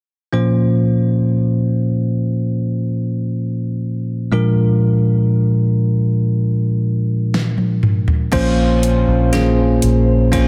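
Longing and heartbroken, this slow pop ballad at 60 BPM in Bb minor opens with a bell-like tine electric piano alone, moving from Bbmadd9 to Bb7 before a drum fill brings in the smooth R&B kit at 7.3 seconds, its soft kick, fat snare and metallic hats re-recorded in a large room and placed up front. At 8.3 seconds the harmony returns to Bbmadd9 as a dark, round, foam-muted electric bass anchors the low end, while a mellow French horn section with light vibrato holds sustained chords and a picked steel-string acoustic guitar, complete with finger squeak, plays arpeggios in the background. Light reverb surrounds a dense, heavily limited modern master in this short cut from a longer piece.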